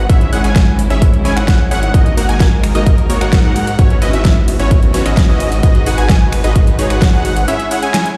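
Euphoric and powerful, this short excerpt of festival progressive house in G# minor drives at 130 BPM in a straight 4/4, led by a punchy, overdriven electronic kick up front and a big-room drum kit with a huge snare, metallic hats, ride cymbal and finger snaps. A thick, menacing detuned saw bass sits forward beneath an airy supersaw stab riff with a filter sweep and a bold unison lead playing arpeggios through lush chorus and dub echo, all three pumping with sidechain. Distant, reedy bowed strings hold dark sustained chords in the background over a progression moving from C#m/G# through D#m/G#, F#7sus4/G# and G#m7, the whole mix ringing in a bare stone room as if through a big sound system.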